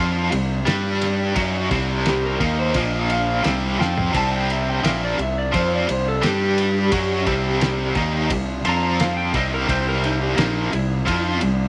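A hypnotic, hazy psychedelic rock excerpt at 86 BPM opens on a bright, overdriven, double-tracked stack guitar riff with tremolo, sitting up front beside a round, fuzz-soaked fingered electric bass. A muffled, gritty, lo-fi drum kit with dark cymbals, a fat snare and a tight kick joins at 0.3 seconds, and at 2.1 seconds a compressed, slightly broken-up slide guitar played with fingerpicks carries the melody through slapback echo. A brief drum fill lands at 3.8 seconds as the harmony circles C5, G5, Bb5 and F5 in a small room with light reverb.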